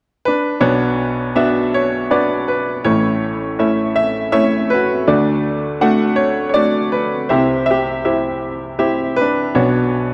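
Folk in a reflective, heartbroken mood at 80 BPM in 3/4, this short excerpt features a baby grand piano that enters at 0.3 s and carries the melody across a range of A1 to F#5 over a Bmadd9, A, D and C progression. The piano sounds bright and brilliant yet worn, with a short sustain, and it sits up front. A moderate concert hall reverb surrounds it within a dark, warm production.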